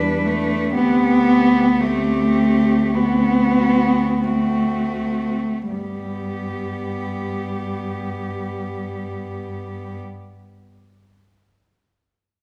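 A resonant recital hall gives this short cut from a longer classical piece for cello ensemble a lingering, wet reverb tail of about 1.6 seconds. The mood is lyrical and warm, set in G major and 4/4, with a rubato feel that moves between 39 and 64 BPM and slows down through the first 5.7 seconds. Four solo bowed cellos play throughout, all sul tasto: the top cello carries the melody between F#4 and B4 with light vibrato and a soft attack, sounding intimate and close, while a second cello traces an inner line from B3 to D4 with an airy bow. Beneath them, a dark, smooth-topped cello sits up front with vibrato on the accompaniment between G3 and B3, and a woody bass cello anchors the low end from D2 to G2. The harmony drifts from Em7 to D7sus4 before settling on G as a new section opens at 5.7 seconds.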